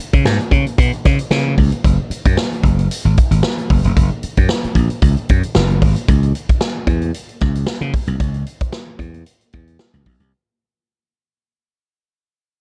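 A dark, warm production with little reverb frames this cool, hypnotic funk groove at 113 BPM in 4/4, set in C# dorian and cut from a longer piece. An electric slap bass carries the low end from the start, its tone bright, growly and punchy, heard direct and amped and placed up front. A swinging big-band drum kit joins at 0.1 seconds, with hi-hat, a punchy kick and a medium-tuned snare, its acoustic, natural sound carrying the air of a big room. The groove runs through the opening section, then moves into a second section at 6.1 seconds. From that point the whole recording fades out until it ends at 10.3 seconds.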